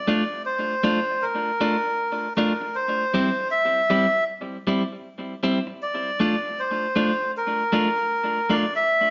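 A reedy, breathy melodica carries the melody from the start of this serious, hypnotic reggae excerpt at 78 BPM with a swung sixteenth-note feel, while a clean, compressed, picked electric guitar with tape echo accompanies it over Bbmaj7, C/G and back to Bbmaj7, both up front as a band playing live in a stone room with a dark, muffled top end.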